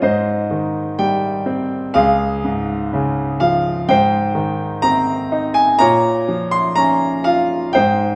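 A brilliant, up-front concert grand piano rings with deep bass and short sustain inside a moderate scoring-stage reverb, in this 8.2-second fragment cut from a longer classical piece. Played solo in Ab major at a rubato 62 BPM in 4/4, the lyrical line ranges from Db2 to C6 and moves through Abmaj7, Db, Abmaj7 and Bbm, giving a reflective, wistful mood.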